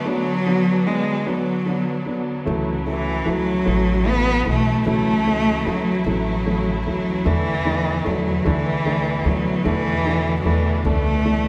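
A slow 6/8 sway at 50 dotted-quarter beats per minute, played with a straight feel and tuned slightly low to A4 = 438 Hz, carries this heartfelt pop excerpt. A single bowed cello sits up front with the melody, its nasal, focused tone colored by vibrato. Behind it, a clear studio string section holds sustained, bowed chords with vibrato in the background, while a warm grand piano supplies accompaniment from the opening moments. At 2.5 seconds a woody pizzicato upright bass with steel strings joins in low as the harmony shifts from B minor to F#m7, later settling on E7sus4 at 7.3 seconds. The whole passage rings in a wet recital-hall reverb of about 1.7 seconds, lending it the spacious air of a church or concert hall.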